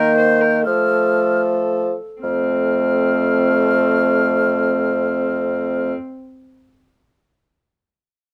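Stately and festive, this short cut from a longer piece is a renaissance-style consort dance in a classical vein. A concert flute carries the melody high in its range, its hollow, airy tone shaded with vibrato and a crisp attack. Beneath it a single bowed viola plays a second line with a gut-string, period-style sound, reedy yet smooth at the top, while a solo trombone adds accompaniment touched with light vibrato. The bassoon holds the bass and sits up front as the most present voice, its warm tone also carrying gentle vibrato. The opening slows down until 2.2 s, moving from an Eb chord to F, before a new section begins, and the consort sits in light reverb.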